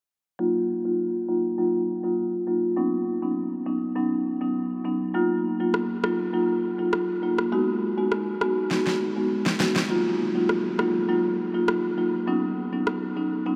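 A woody, up-front marimba with rosewood bars carries this hypnotic, bouncy dancehall excerpt, its band-limited, vintage tone shaped by a low-pass filter sweep through the opening section as it cycles through Ebmadd9, Badd9 and Abm7 chords. At 5.7 seconds a layered electronic rim click and fat snare join, playing a drum fill just before the second section begins at 9.9 seconds. The whole mix is soaked in a huge, dreamy reverb that lends the groove a floating haze.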